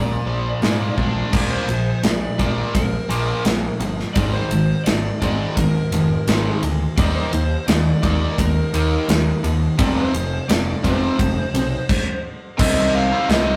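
A double-tracked, overdriven stack guitar drives a brooding, swaggering classic rock riff up front, alongside a fuzz-drenched picked bass with a punchy, bright bite and a warm lead guitar through a small cranked amp carrying the melody lower in the mix. A big acoustic drum kit with bright cymbals and a punchy kick enters at 0.6 seconds, and the band moves through Bb5, Absus2, Eb5 and F5 power chords before a stop at 11.9 seconds that lands on Cm at 12.6 seconds. The sound is a rough rehearsal-room capture with light reverb, cut from a longer piece.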